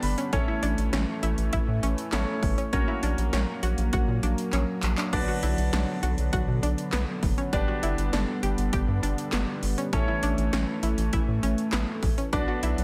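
A short fill on a bright, brilliant grand piano opens this driving, cool synth-pop excerpt, and the piano carries on as polished accompaniment with long sustain. Beneath it, a shimmering, retro pulse-width pad holds sustained chords with a soft attack and chorus, while a rubbery, hollow square bass sits up front, dark and bouncy. The 80s electronic pad drums bring a punchy kick, metallic hats, handclaps, crash cymbal and a gated snare with tape-like character, plus a drum fill from 4.5 to 5.1 seconds. From 0.2 seconds an analog pluck adds round, detuned sawtooth arpeggios with a fast attack and short decay, treated with chorus and digital delay. The chords move from A through F#/A#, Bm, G and A before returning to Bm, all set in light reverb and digital ambience.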